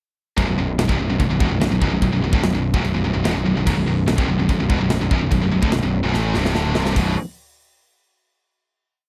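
Relentless and dark, this short heavy metal piece in B phrygian drives at 146 BPM in a straight 4/4, with two distorted high-gain guitars, one heavier and one scooped and set in the background, hammering out a power-chord riff over a growly, fuzz-soaked picked bass that sits up front, pushes eighth notes and doubles the riff. A tight metal drum kit with bright cymbals, a medium-tuned snare and a firm, tight kick holds a driving groove, adding china and crash accents before a fill from 6.1 s leads into a final B5 chord at 7.0 s. The sound is dry and close, in the manner of a 1970s studio recording.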